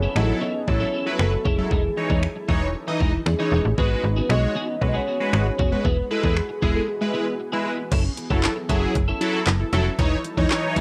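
Confident and energetic, this dance-pop excerpt moves at 116 BPM in F# dorian, with a snappy, metallic FM bass pumping up front beneath a fat, detuned sawtooth polysynth treated with chorus and phaser, a clean, bright twelve-string electric guitar riff, and a very quiet, ethereal pad shimmering behind them. A round, dark octave-layered synth lead with vibrato carries the melody until 7.7 seconds, while a smooth R&B kit of knocking kick, woody snare, finger snaps, handclaps, hats and crash drives things forward, and a break arrives from 6.9 to 7.9 seconds. The whole piece has the light reverb and tape haze of a home cassette recording, cycling through chords such as F#m7, G#m7 and E.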